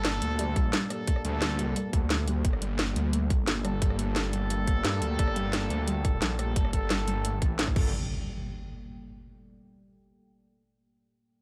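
Aggressive and futuristic, this short cut from a dark technical drum and bass track drives at 175 BPM in G minor, with a thick, detuned saw bass up front under a deep, moody ambient pad carrying sidechain pumping and 12-bit sampler grit, a warbling, dusty lo-fi pluck arpeggio kept very quiet, and clear brass ensemble stabs softened by a low-pass filter and tape echo, all resting on a sustained Gmadd9. The layered electronic kit brings a cracking snare, metallic hats, rim clicks and crashes, joined at 0.6 seconds by a tight, up-front kick. At 7.9 seconds the music drops out and an electronic impact hits alone, set in light digital ambience.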